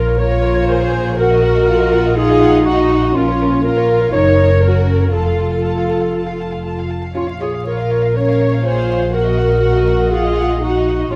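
Quirky and mischievous, this whimsical film cue in Bb minor moves at 121 BPM in a straight 4/4. A floating, pure violin section carries the melody high above a distant, roomy solo clarinet and a second, intimate violin section on the inner line, while a background viola section plays sul tasto accompaniment with vibrato. An up-front double bass section anchors the low end, joined at 0.2 seconds by a dark, smooth-topped cello section, all set in a moderate scoring-stage reverb with vinyl crackle in this brief excerpt cut from a longer piece.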